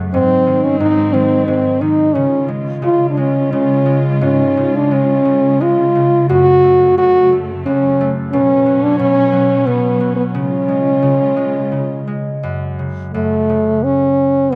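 Wistful and gentle, this children's lullaby moves at 88 BPM in a rubato 3/4, tuned slightly low to A4 = 437 Hz. A warm French horn carries the melody up front from 0.1 seconds, playing a classical solo line that is smooth on top, with light vibrato and a slapback echo. Beneath it, a ringing acoustic concert harp provides fingerpicked accompaniment. A dark chamber string section holds bowed chords with a soft attack and expressive vibrato until 12.4 seconds, when the strings stop and horn and harp carry a new section. The harmony passes from G#7 through C#, F#m, Bsus2 and C# before settling on F#m, all framed by light reverb in an open-air recording free of room sound, cut from a longer piece.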